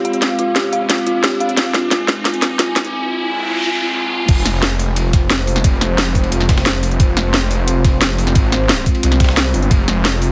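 A thick, detuned saw bass with overdrive and chorus drives this dark technical drum and bass excerpt at 177 BPM in F minor, arriving at 4.3 s on the drop beneath a knocking electronic kick, a cracking, crisp-hatted main kit up front and a gritty, tape-toned breakbeat kit with ride and snare in the background. Before that, a build-up pairs an eerie, inharmonic FM bell arpeggio, pumping with delay and chorus until 2.8 s, with a drum fill, a riser and a noise sweep, while a moody square-and-saw pad with phaser holds sustained Fm chords throughout. The mechanical, futuristic mix carries light digital reverb and a heavily compressed, radio-like sheen.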